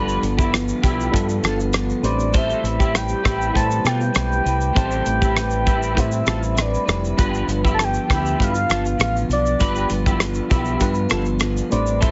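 A soft, octave-layered synth lead carries the melody in this lonely, hazy bedroom-pop fragment, phased and chorused with tape echo, over a slightly broken-up electric guitar second line, a chorused, vibrato-tinged guitar accompaniment, a reedy electric piano shimmering with fast tremolo in the background, a round, punchy dub bass, and a dry, damped 70s kit of tight kick, hi-hat, rim click and shaker entering at 0.1 s, all moving from G7 to Am9 and back through a heavily compressed, radio-like sound with light reverb.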